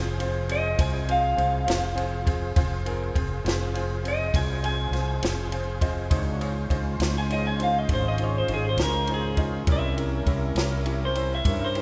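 A brooding, soulful slow blues in F minor opens with a brilliant, short-sustained grand piano comping over a slow-rotary tonewheel organ that sits in the background with key click and chorus vibrato, while a dark, round fretless bass sits up front. A dry, compact cocktail kit joins at 0.2 seconds with a punchy kick, high-tuned snare and ride cymbal, moving at 68 dotted-quarter beats per minute in a straight 12/8 feel. At 0.5 seconds a clean, twangy electric guitar takes the melody through a small old amp, picked with a slightly broken-up, lo-fi edge. The piano slips in a fill just before a very quiet, tight horn section arrives at 6.1 seconds with smooth, jazz-style sustained chords and light vibrato, as the harmony moves from Fm to Dbmaj7 and then C7b9. The whole fragment, cut from a longer piece and tuned to A4 = 445 Hz, sits in a wet church reverb with a dull top that stops at 11.0 kHz.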